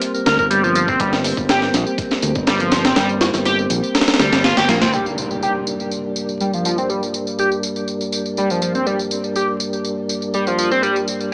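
A gritty, screaming synth lead with a guitar-like edge sits up front in this swaggering breakbeat clip at 122 BPM in G minor, its detuned, saturated riff colored by phaser, chorus and tape echo over a mellow tonewheel organ holding dark, round Gm chords through a fast rotary speaker, sidechain pumping and a low-pass filter. A compressed sampler-style breakbeat kit with a thumpy kick and high-tuned snare drives the opening with a bright fingered bass until 4.9 seconds, while a tape-warm electronic tambourine runs throughout and a vintage alto saxophone offers one brief Bb4 note at 0.3 seconds. At 4.9 seconds a background impact hits as filter sweeps begin on both the organ and the lead, all heard through a small room with vinyl crackle and a small-speaker tone.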